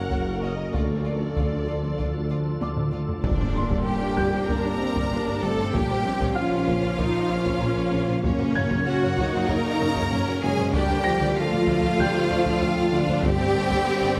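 A vast, brooding hybrid orchestral and electronic film score in G minor at 96 BPM opens with lush bowed strings, a very quiet violin melody over a rich studio violin line, close cellos, background violas with portamento and double basses, beneath mellow French horns, a dark tuba, a calm organ-like pad with ensemble chorus, a soft round pluck arpeggiating, a boxy felt-muted piano with digital delay, and hard-stick taiko drums, until a drum fill gives way at 3.2 seconds to a huge, bright impact and clear trombone chords, all bathed in a wet scoring-stage reverb.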